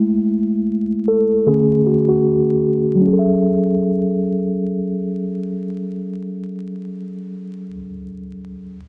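A mellow, clean tine electric piano sits up front through its built-in speakers, softened by a low-pass filter and light reverb, as it moves from Eadd11/G# to Dmaj7#11 and settles on F#m9 at 3.1 seconds in this reflective, hazy hip hop fragment, cut from a longer piece, at 75 BPM with a gentle 16th-note swing in F# minor (tuned to A4 = 443 Hz), wrapped in a dark production with vinyl crackle.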